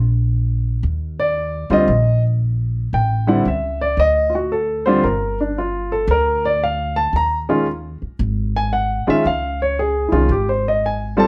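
A woody, thumpy pizzicato upright bass with bright steel strings opens this swinging jazz piano trio excerpt, joined at 1.2 s by a natural-sounding baby grand piano carrying the melody with short sustain, both up front in a light reverb over a warm mood and shifting chords.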